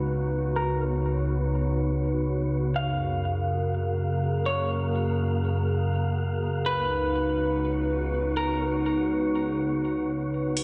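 Floating and dreamy, this excerpt of atmospheric cloud-rap drifts in free time over a warbling, tape-like pad that holds sustained chords from the start, moving from C#7sus4 to F#maj7 at 2.8 seconds and back again at 6.7 seconds. The pad sits up front with a nostalgic, detuned, wave-folded character, its slow attack and long release softened by chorus, built-in reverb and a low-pass filter. Above it, an electric guitar through a small old amp picks a slightly broken-up, compressed melody until 8.6 seconds, shaded by delay and filtering. An airy, breathy wind-like noise layer breathes quietly alongside through most of the passage. At 10.6 seconds a booming analog drum machine arrives with a crash cymbal and metallic hi-hats. A filter sweep runs across the whole stretch, and the dark production sits in a lush hall reverb that gives the piece a hazy, cushioned depth.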